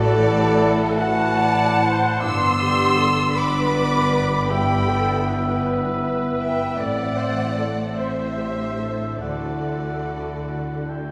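A lush violin section carries the tender, uplifting melody of this slow, rubato cinematic excerpt in 6/8, around 47-54 BPM, with pure, close-miked flutes, a rich background violin section, a gently vibrato oboe and a dark clarinet weaving second lines over an even viola accompaniment, mellow sustained French horn chords, very quiet ringing fingerpicked harp arpeggios and a cello and double bass foundation, all bathed in a wet church reverb as the harmony moves from Dadd9/A through G, Em/G and Am back to Dadd9.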